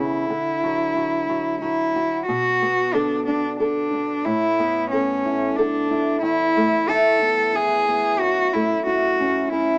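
Folk music in 3/4 at 91 BPM, this short passage cut from a longer piece has a warm, gentle mood. A bowed cello carries the melody from C#4 to A4, nasal and smooth with vibrato and an even tone, sitting up front in the mix. Beneath it, a fingerpicked old ladder-braced acoustic guitar plays accompaniment from E2 to A4, its dark, woody sound coloured by old strings, also placed up front though softer than the cello. Both parts play throughout the 9.8 seconds, moving through Dadd9, Bm7, Asus2, Esus4 and F#m7, with the opening phrase repeating from 2.3 seconds. Light reverb and a small speaker sound lend the recording a boxy character.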